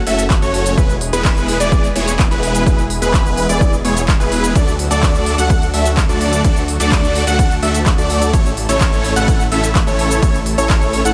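Lightly reverberant and polished, this uplifting, triumphant slice of festival progressive house at 127 BPM in A major is led by a huge, euphoric supersaw riff with phaser and dub echo sitting up front, joined by a bold unison lead playing bright arpeggios, a thick detuned saw bass with chorus and sidechain pumping, a very quiet airy pad holding sustained chords, and a big-room electronic kit of crisp hats, handclaps, ride cymbal and shaker under a punchy kick that enters at 0.3 s, over a progression of F#m, E, D and A.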